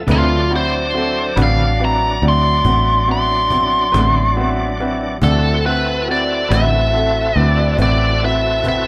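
A biting, overdriven lead guitar takes a bright, picked solo up front in this swaggering, rollicking slow blues excerpt at 47 BPM in 12/8, over a D13 chord. A round, dark fingered bass sits forward, while a brilliant concert grand piano accompanies and a full, shouting tonewheel organ, lightly overdriven with key click and slow rotary speaker, fills in sustained chords. A very quiet, twangy, compressed clean guitar drops out at 6.8 s, and a snappy cajon with snares stays in the background, the whole band playing live in one large studio room with moderate reverb.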